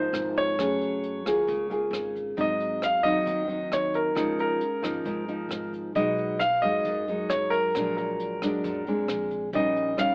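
A straight 4/4 bossa nova groove at 134 BPM rides on a brushed jazz kit that enters at 0.1 s with hi-hat, rim click and a boomy kick, while a woody pizzicato upright bass sits in the background. Up front, an open-sounding concert grand piano carries the melody in Db major as a thumb-plucked classical nylon-string guitar comps through lush changes like Db69, Gbmadd9 and Bbaug7. The mood is sunny and relaxed, and light reverb and an AM radio sound color this brief cut from a longer piece.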